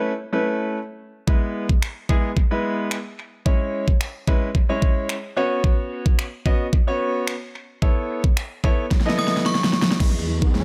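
Dance-pop with a summery, upbeat mood, this excerpt opens on a clear, polished baby grand piano playing chords through sidechain pumping and a low-pass filter, joined at 1.3 seconds by an up-front pop drum kit with a knocking kick, fat overdriven snare, finger snaps and crash cymbal. Near the end, a drum fill arrives, an FM synth chime rings out an inharmonic melody with phaser and dub echo, and at 10.0 seconds a smooth, detuned sawtooth analog pad and a woody, round mallet-like synth pluck playing arpeggios enter. A background riser closes the passage, all set in a light, echo-heavy mix.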